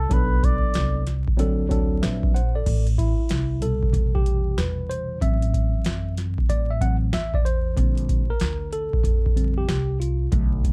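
Smoky and mellow, this jazz-hop excerpt at 94 BPM in A dorian rides swung 16ths as a veiled, breathy cup-muted trumpet with slapback echo sings briefly until 1.1 seconds over woody pizzicato upright bass and a booming analog drum machine with deep kick, crisp snare and metallic hats set up front, before a worn, slightly out-of-tune, lightly overdriven tine electric piano takes the solo from 2.7 seconds, the whole set in a dark, dry production flecked with vinyl crackle.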